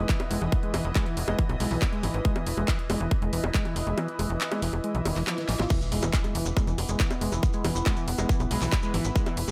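A tight, nasal sequencer bass drives this psychedelic trance excerpt in E major at 139 BPM from the first second. It sits up front, joined by a squelchy, resonant acid bass riff whose filter sweeps through the opening 5.7 seconds, colored by chorus, delay and sidechain pumping. Behind them, an overtone-sweeping drone holds sustained chords with phaser and chorus, while a cloudy, blurred granular pad drifts in the background, both breathing with the same pumping. A punchy, overdriven electronic kick and a layered big-room kit with a huge snare, handclaps, hi-hat, bongos and crash carry the intense, straight 4/4 groove. The kick drops away at 4.0 seconds, and a drum fill and a very quiet electronic swell and impact lead into the drop at 5.7 seconds. There a grainy, mellow shekere joins, adding an acoustic, live-room touch to the full electronic texture.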